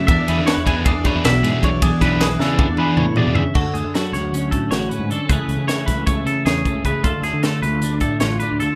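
A clean, compressed twelve-string electric guitar with ensemble chorus sits up front in this bright, intricate fragment of math rock and midwest emo at 310 BPM in 9/8, while a twangy picked guitar plays arpeggios above it. A biting, double-tracked overdriven guitar riff drops out at 3.4 seconds, and beneath it a growling overdriven fingered bass and a crisp acoustic fusion kit drive the music, with a high-tuned snare, punchy kick and pumping small-room sound; the drums play a fill from 2.4 seconds. The rough, dry home-demo mix starts on E7 and moves through Dmaj7, Amaj7/C# and Dmadd9 once the second section begins at 3.6 seconds.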